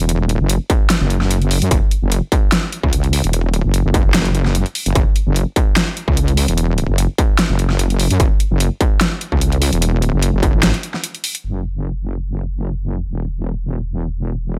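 A digital ambience frames this aggressive, menacing heavy wobble dubstep excerpt in F# minor at 148 BPM with a swung half-time feel, where an up-front, detuned sawtooth wobble bass, saturated and thickened with chorus and overdrive, drives the drop beside a dubstep kit of huge snare and bright hi-hats and a distorted electronic kick that enters at 0.7 seconds. The kick drops out at 10.5 seconds and the kit at 11.4 seconds, after which the bass plays alone until 14.6 seconds.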